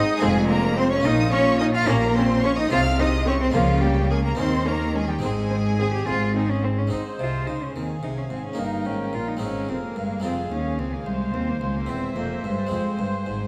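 This dramatic, stormy excerpt from a baroque-style concerto movement opens at once with the full ensemble, its solo cello carrying the melody in a smooth, close, vibrato-laden voice above the strings and harpsichord. At 72 beats per minute in a dotted-quarter 6/8 pulse, the music sits in A-flat major yet leans often on F minor, passing through colours such as B-flat minor and a diminished chord before settling on A-flat. A high, expressive violin section also carries the melody, while a second violin section, focused and distant, traces a lower supporting line in the background. A bright, dry, plucked harpsichord and a lush viola section fill in the accompaniment, and a cello section and an even-toned double bass section, bowed with vibrato, anchor the bass. A second section begins at 6.9 s, turning toward E-flat and a C major chord before closing on F minor. The solo cello stops at 13.0 s, and the ensemble rings on in a reverberant recital-hall space until 13.5 s.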